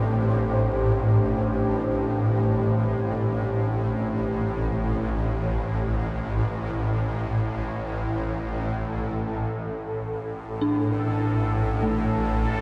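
Dark ambient drone, vast and ominous, cut from a longer piece: a swarming, nasal low drone sits up front with a bright, granular edge, while a deep, wave-folded pad with chorus holds sustained chords until 8.8 seconds. An eerie, inharmonic FM bell traces arpeggios through chorus, phaser and tape echo, and at 8.8 seconds a bubbling, resonant texture of random filter steps enters as the chords drop out. A huge ambient reverb with a long tail surrounds the sound.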